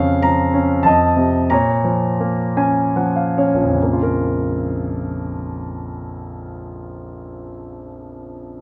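Classical solo piano in a lyrical, rubato vein, this short passage cut from a longer piece carries a bittersweet, moody character in triple metre. A clear concert grand piano plays alone from start to finish, ranging from a deep bass register up into the upper middle of the keyboard. Its tone is open with long sustain and sits up front, framed by a moderate recital hall reverb. The opening harmonies move from a minor chord over its fifth to a dominant seventh and back, while the pace slows through the first 3.8 seconds and a piano fill from 2.2 seconds leads into a new section. That second part carries the music through to its close at 8.6 seconds.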